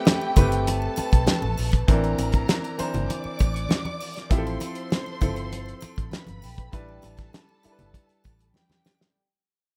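A lush, bittersweet 1970s-style soul fragment at 99 BPM opens with a distant, bowed string section full of vibrato and portamento above an open baby grand piano, moving smoothly through Am9, C9, Fmaj7 and Em7. An up-front, cloth-damped drum kit with a fat, gritty snare and tight kick joins a round, foam-muted electric bass, hard-hand congas and a shimmering triangle in the background, while a mellow soft-mallet vibraphone rings in at the start and again at 6.4 seconds. The rough home-demo mix carries light reverb and fades out across its length, ending on a drum fill at 8.6 seconds.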